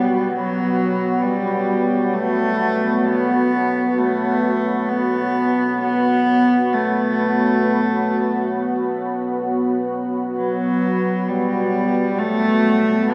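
A dark analog pad and a single bowed cello begin together: the pad sustains a slow-attack, detuned B5 chord with a sub octave beneath it, wrapped in chorus and shimmer reverb. The lone cello carries the melody with a nasal, gut-string, period-style tone, trailed by shimmer reverb and tape echo. Cut from a longer piece, this cavernous, unsettling ambient passage drifts in free time for 13.1 seconds, with both parts up front inside a wet cathedral reverb that takes 6.0 seconds to decay.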